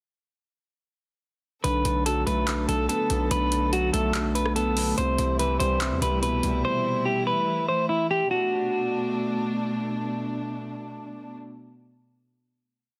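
Over a half-time trap beat at 144 BPM from a booming analog drum machine with metallic hats, handclaps and rim clicks, this dark, hard-hitting hip hop piece in B phrygian sets a twangy clean electric guitar loop with digital delay up front against a mellow baby grand piano arpeggio, a distorted 808-style bass with long sliding sub notes, and a sul tasto chamber string pad that moves from Bm7 to Cmaj7 and holds a final Bm7 from 8.3 until 11.3 seconds, all in a dense, heavily limited mix with light small-room reverb.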